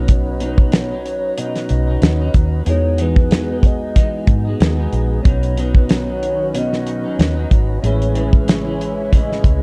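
Laid-back and sunny, this short cut from a longer indie and bedroom pop piece sits in an easy 4/4 with a light swing on the sixteenths. A damped 70s drum kit sits up front, its dry, fat snare and tight kick framing hi-hat, while a foam-muted fingered electric bass, also up front, adds a round, dark low end. A clean, picked electric guitar with a twangy, scooped tone is treated with lush chorus and vibrato, and a mellow tonewheel organ turns slowly through its rotary speaker with audible key click and a cassette-tape tint. Over them, a hollow, woody clarinet-like synth lead carries the melody with a soft, sustained voice and analog chorus. At 5.8 seconds a swirling, warbling analog pad of detuned sawtooth joins in the background, colored by phaser and chorus, as the chords drift from Badd9 through Emaj7 and back before landing on Amaj7 within a dark, warm studio production.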